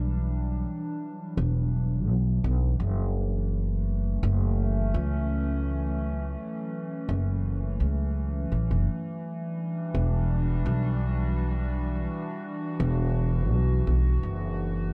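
Dark, woody and lightly reverberant, this short ambient dub passage, cut from a longer piece, feels spacious and deep, with a gently swung 4/4 pulse. A warbling, tape-like pad carries sustained chords from start to finish, its detuned, lo-fi tone softened by slow attacks, long releases, chorus and its own reverb, giving the harmony a nostalgic haze. Underneath, a pizzicato upright bass with steel strings sits up front, its thumpy, acoustic body thickened by tube saturation. The harmony rests on Em9, moves to F#m7 at 3.2 seconds, and returns to Em9 at 8.9 seconds. The overall production is warm and subdued, leaving plenty of room around the two parts.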